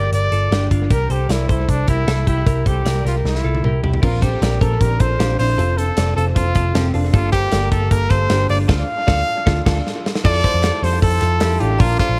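Jangly indie pop in F major at 154 BPM, nostalgic and bright, where a clear, close-miked trumpet with vibrato carries the melody over twangy twelve-string electric guitar arpeggios, a round, foam-muted picked bass and a punchy big-room rock drum kit with drum fills at 3.2 and 9.9 seconds, a dark, slightly detuned upright piano joining at 4.0 seconds, and a bell-like glockenspiel and crisp group handclaps adding very quiet touches near the end of this echo-heavy cut from a longer piece.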